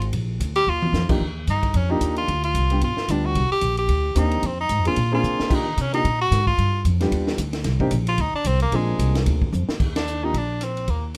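Sophisticated and warm, this short excerpt cut from a longer piece is fast small-group swing and bop jazz at 223 BPM in 4/4, set in Eb major with a lilting swung eighth-note feel. An edgy tenor saxophone carries the melody up front, soloing from 0.0 to 9.8 seconds with a forceful, punchy tone, vibrato and scooped notes. Beneath it, a woody pizzicato upright bass on steel strings sits close and present, while a compact cocktail drum kit sounds distant and roomy, with a high-tuned snare, a punchy kick and a rolled-off top, adding fills at 0.7, 5.2 and 9.5 seconds. A grand piano with an intimate, natural character and audible action noise comps from 1.1 seconds, moving through rich changes such as Ebmaj7, Cm9, Fm7, Bb7 and Ebmaj9. Light reverb gives the small room a gentle bloom, and the band hits an accent at 9.9 seconds as the music turns into a new section.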